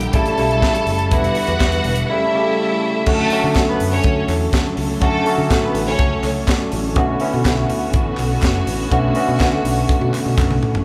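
A tight, up-front funk drum kit with bright cymbals and a high-tuned snare drives this celebratory, danceable disco excerpt at 123 BPM in D major, joined by a barky, clean tine electric piano, a round, dark fingered bass, lush woody strings holding background chords, a clear, smooth-topped string line with vibrato that drops out at 6.2 s, and very quiet hollow handclaps, all in a large reverberant room before a drum fill at 10.4 s.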